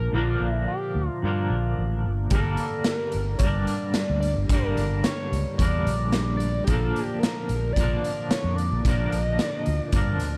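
Trippy and mysterious, this psychedelic rock excerpt at 110 BPM opens with a screaming, distorted synth lead carrying the melody through chorus, phaser and tape echo over a twangy, double-tracked electric guitar riff with tremolo and a growly, punchy fretless bass, while a raw garage drum kit with gritty, saturated hits in a pumping stone room enters at 2.3 seconds as the chords move from Bb to Gm and back to Bb.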